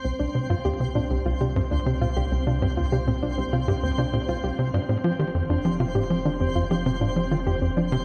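A tight, punchy sequencer bass sits up front in this excerpt of ambient space music, driving a sawtooth riff through a delay at 99 BPM in straight 4/4. Around it, a soft, round pluck traces gentle arpeggios with chorus, delay and shimmer reverb, while a deep sine sub bass holds the low end and a twinkling, sparkling granular texture floats above. The echo-heavy mix sits in a wet chamber reverb, giving an expansive, cosmic mood as the harmony moves from C5 to F5 at 4.9 seconds.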